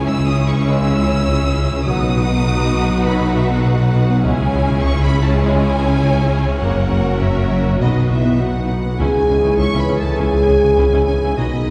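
A hybrid orchestral and electronic film score cue, vast and brooding, cut from a longer piece and moving at a steady, straight pulse in four. Lush bowed violins carry the melody with vibrato and a soft attack, while a second violin line sits beneath them, and a distant viola section fills in the accompaniment in the background. Dark French horns and very quiet, tight trombones enter at 0.7 seconds with sustained chords. A shimmering, retro pulse-width pad with chorus adds its own very quiet chords. The low end is heavy: a smooth synth bass plays a riff, and a rich cello section, bowed double basses and a thick, detuned saw bass all hold the bass line, joined by a mellow, close-miked tuba until 8.8 seconds. A roomy concert hall reverb places the orchestra further back, giving the whole cue a grand, cavernous depth.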